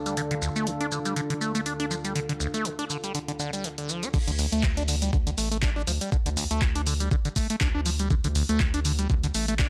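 Raw and gritty, this acid house excerpt at 121 BPM in D minor opens with two warbling, detuned pads holding a D minor chord and a higher texture under chorus, built-in reverb and sidechain pumping, while a squelchy, resonant acid bass riff with phaser, overdrive, sampler grit and analog delay rides up front over a tape-warm analog drum machine of crash, handclaps, hi-hat and shaker, until the pads stop at 4.1 seconds for a drop on a D5 chord, where an overdriven, thumpy kick and a round, deep analog bass with sidechain pumping join, all in a dry, gritty hardware sound.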